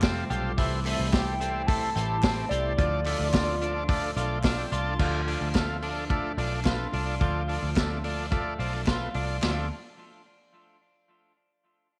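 A hollow, woody clarinet-like synth lead carries the melody from 0.6 to 4.4 seconds, soft and sustained with vibrato and chorus, giving this wistful, bittersweet slice of jangly indie pop its voice. Underneath, at a straight 108 BPM in 4/4 and in D dorian, a bright, twangy twelve-string electric guitar picks out clean arpeggios through tape echo, while a buzzy vintage combo organ with gentle vibrato plays accompaniment and adds a transistor organ fill from 3.9 to 5.0 seconds. A swirling, nasal analog pad with phaser and chorus holds sustained chords in the background until 5.0 seconds, moving from Fadd9 to C6 and then Dm. The low end comes from a round, foam-muted picked electric bass and an up-front vintage drum kit with a punchy kick, medium-tuned snare, dark cymbals and a rolled-off top, joined by very quiet, crisp group handclaps. A light small-room reverb frames the whole, and the passage is cut from a longer piece.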